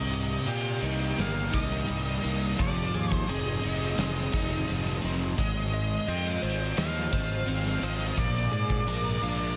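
A short cut from a longer shoegaze and dream pop rock piece in C minor at 86 BPM opens with a picked overdriven guitar riff thickened by ensemble chorus, a compressed clean guitar with reverse reverb sitting in the background, and a dark, round fuzz bass up front, while a distorted octave-fuzz lead carries a melody through tape echo. A huge arena drum kit enters at 0.1 s with a punchy kick, medium-tuned snare, bright ride cymbal and a pumping hall sound, over chords moving from Cm7 through Fm7 and Ab6 to Bb7. The mood is dreamy and hazy, framed by light reverb and small room ambience.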